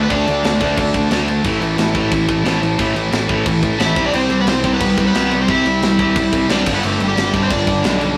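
A fuzzy, growling electric bass sits up front in this raw, aggressive punk rock excerpt, driving hard at 178 BPM in a straight 4/4 alongside a bright, overdriven semi-hollow guitar that carries the melody, sounding briefly at the start and returning from 3.8 to 8.1 seconds. Beneath them, three picked electric guitars play the riff throughout: a compressed, very quiet distorted guitar, a bright, double-tracked high-gain guitar, and a sludgy overdriven guitar, the latter two sitting in the background. A tight metal drum kit enters at 0.1 seconds with kick, medium-tuned snare and crash cymbal, its saturated, gritty sound carrying a rolled-off top. The chords move from D5 to A5, then C and G. A moderate small-room reverb and a rough rehearsal-room quality give the whole thing a loud, unpolished immediacy.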